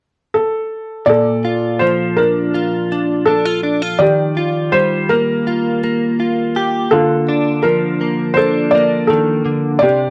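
An acoustic folk-pop ballad in Bb major at 82 BPM, nostalgic and intimate, cut from a longer piece. A felt-muted upright piano carries the melody from 0.3 s, its soft, mellow tone marked by short sustain and audible action noise, and at 1.1 s a clean, picked electric guitar, recorded direct and compressed with analog chorus, joins in accompaniment over Bbmaj7, Ebadd9 and Bbmaj7/D. Both parts sit up front under close, detailed microphones in a moderate studio reverb.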